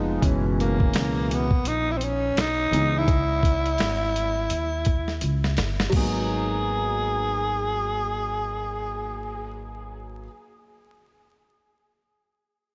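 A growling, breathy tenor saxophone carries the melody up front from 0.6 s, its raspy subtone touched by tape echo in this mellow, smoky jazz-hop cut from a longer hip hop piece. Beneath it, a dark baby grand piano with analog chorus lays down swung, smoky chords over a woody pizzicato upright bass. A compressed, pitched-down boom bap kit with a thumpy kick plays up front until a drum fill at 5.2 s, then drops out at 6.1 s. Light studio reverb, vinyl crackle and a muted top end give the recording a hazy, lo-fi sheen.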